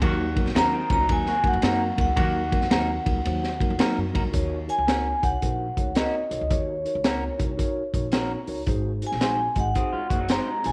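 A crunchy, saturated breakbeat kit sits up front in this passionate, urgent 1960s-style soul cut, with a high-tuned snare, tight kick and dark cymbals, while a vibraphone played with soft mallets carries a ringing, airy melody with slow motor vibrato from 0.6 s. A woody, growly pizzicato upright bass and mellow tine electric piano run throughout, the piano adding a fill at 7.9 s, as a dark, clean hollow-body guitar drops fingered stabs through spring reverb and a lo-fi, slightly broken-up guitar plays a picked riff at the start and again from 9.8 s. A tight, vintage horn section with light vibrato appears only briefly at the opening, and the swung groove sits in a small room with moderate echo chamber reverb as the harmony moves from minor chords to a dominant seventh.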